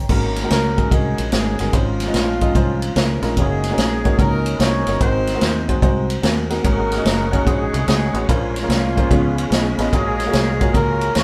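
A swinging big-band drum kit sits up front with a boomy kick, medium-tuned snare, ride and crashes, driving this jubilant, hopeful uptempo gospel excerpt at 146 BPM with a swung feel. A punchy, foam-muted fingered electric bass and a woody upright piano accompany a mellow horn section carrying the melody in octaves with light vibrato, while the piano adds a fill at 9.1 seconds. At 6.6 seconds a lightly overdriven tonewheel organ enters in the background with sustained chords, key click, chorus vibrato and a slow rotary speaker, all in the light reverb of a band playing live in one room.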